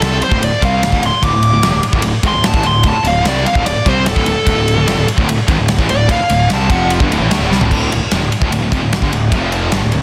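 A straight 4/4 hard rock drive at 148 BPM opens this powerful, anthemic excerpt, where a big, punchy rock kit up front with crash, ride, snare and toms backs a dark, smooth overdriven lead guitar solo with analog delay from the start until 6.9 seconds, over background riffs from an overdriven semi-hollow guitar and a bright, scooped high-gain guitar, a growly fuzz-laden picked bass, and a very quiet double-tracked distorted guitar joining at 1.2 seconds, with a drum fill at 7.5 seconds leading into a new section as the dense, heavily limited mix moves from D5 power to F5 in a small room with light reverb.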